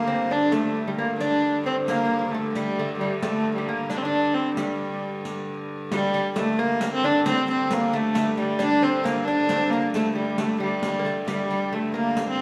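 A medieval dance in G minor, this driving, mysterious passage moves at 89 BPM in a straight 6/8, cut from a longer piece. A viola da gamba carries the melody up front, its bowed, fretted gut-string tone nasal and reedy with an airy bow and light vibrato. Beneath it a fingerpicked lute plays a delicate second line in the background on doubled gut strings. A hurdy-gurdy holds a smooth, even drone low and close throughout. From 0.5 seconds a riq joins with dark, band-limited jingles and a vintage character. The ensemble sits in a recital hall with a wet reverb, and the dance moves into a new section at 5.9 seconds.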